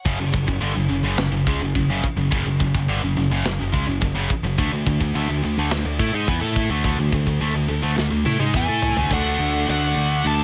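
Heavy and epic, this heavy metal passage is driven by an up-front, double-tracked high-gain guitar riff over a growly, punchy picked bass and a tight acoustic drum kit with a medium-tuned snare and a rolled-off top, set in a small room ambience. A drum fill arrives at 8.0 seconds, and at 8.6 seconds a bright, high-gain lead guitar with distortion and delay enters high above. The music then drops into a half-time feel at 9.1 seconds, as the harmony moves from F#5 and D5 to D.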